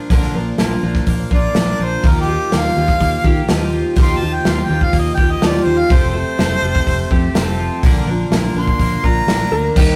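Folk rock and heartland rock at 124 BPM with an open-road, nostalgic mood, where a clear harmonica with vibrato solos from 1.3 seconds over a shimmering, octave-doubled twelve-string acoustic guitar, a bright, twangy twelve-string electric guitar riff bathed in spring reverb, a round, punchy fingered bass and an up-front natural country drum kit with a punchy kick, moving through Bb, Ebadd9 and Fadd9 before a dark, clean lap steel slides in on a single Bb at 9.5 seconds, all captured in a rough rehearsal-room recording with warm saturation.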